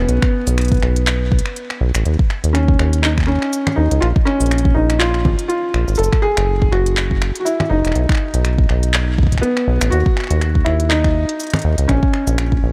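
Intricate and melancholic, this IDM passage, cut from a longer piece, moves with a light 16th-note swing in 4/4. A felt-muted upright piano carries the melody between B3 and A4, its soft, mellow, intimate tone touched by delay and placed up front. Beneath it, a deep acid bass spans E1 to D#2 with a rubbery, resonant sawtooth voice, fast attack, decaying notes and saturated grit, sharing the front of the mix with a deep electronic kick drum. The kick and an organic electronic kit both carry tape coloring and a re-recorded small-room character, the kit adding congas, finger snaps, handclaps, shaker and smooth hi-hats from further back. After a chordless opening, the harmony moves through C#sus2, A#m, a rootless Eadd9, B and D#m before reaching A#m again near 11.9 seconds, set in light reverb and a dark production.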